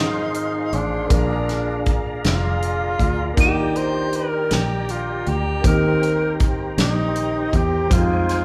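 A breathy, whispered tenor saxophone carries the melody from the first moment in this soulful, reverent slow gospel fragment in 6/8 at 53 BPM in Eb major, its scooped notes and vibrato sitting up front over an intimate concert grand piano with audible action noise and a round, foam-muted fingered electric bass. A percussive tonewheel organ holds sustained chords with key click, chorus vibrato and a fast rotary speaker, and a punchy modern studio drum kit enters at 0.3 s with hi-hat, kick and a medium-tuned snare. The band plays together in one room with a wet, large studio reverb as the harmony moves from Fm7 and Bb7 to Ebmaj7 and Cm7/Eb before returning to Fm7.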